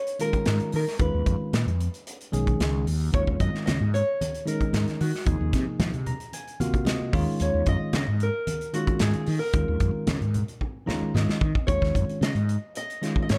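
Electric jazz fusion in Eb minor at 112 BPM, this slick, intense passage is cut from a longer piece and moves in a straight 4/4. A small, fingerpicked nylon-string guitar carries the melody with audible finger squeak, while a bell-like tine electric piano, bright and clean, supplies the chords over a harmony that circles from Eb7sus2 through Db7/Eb and Ab13/Eb. Up front, a mellow fretless electric bass sounds round and dark, joined by a modern studio drum kit of hi-hat, punchy kick and medium-tuned snare in a pumping room. Low-tuned congas with a thick skin and soft hands sit in the background from 3.1 to 11.5 seconds. The electric piano adds fills, and the drums play a fill between 10.6 and 11.7 seconds, all within a warm production with light reverb.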